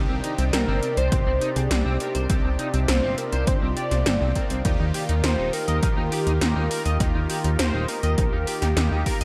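Synthwave at 102 BPM in C minor, nostalgic and nocturnal, where a swirling phased pad and bold brass stabs sit in the background over an up-front chorused synth bass with sidechain pumping, a twangy guitar riff on the edge of break-up with delay, gated-snare pad drums with metallic hats, a velvety lead melody entering at 0.5 seconds with tape echo, and a punchy overdriven kick arriving at 1.1 seconds, all moving from Cmadd9 to Ebadd9 in a dark, light-reverb production.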